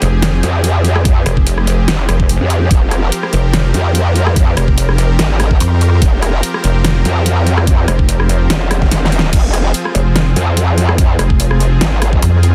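Heavy wobble dubstep in F minor at 145 BPM with a half-time, lightly swung feel, this aggressive, chaotic fragment cut from a longer piece sits on an Fmadd9 chord held by a lush, detuned supersaw pad that pumps against the sidechain beneath two up-front basses: a mellow, pulsing pluck wobble bass with chorus and overdrive, joined at 0.4 seconds by a growling, formant-filtered growl bass. A dubstep kit with a huge snare, bright hats, rim clicks and crashes drives throughout, and an overdriven, knocking electronic kick enters at 1.1 seconds, with a drum fill at 8.9 seconds. The dry, dense mix is heavily limited and loud.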